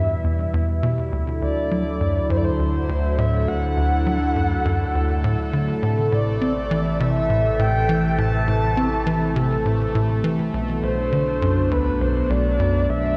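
Worn cassette tape with warbly pitch drift colours this 13.2-second excerpt from a longer piece, all set in a wet concert-hall reverb. It is mysterious, hypnotic ambient space music driven by a sequencer, at 102 BPM in a straight 4/4, tuned to A4 = 437 Hz and moving through Em, Dadd9, Am and Bm7. A tight, punchy sequencer bass plays the riff from start to finish. Its sawtooth and square tone is shaped by a plucked filter with a moving notch and echoed by analog delay, while a round sine sub bass sustains beneath it. A swirling, detuned sawtooth pad holds bright chords up front, treated with phaser and chorus. Over the top, a breathy, flute-like lead with a soft noise layer and vibrato carries the melody through lush chorus and analog delay.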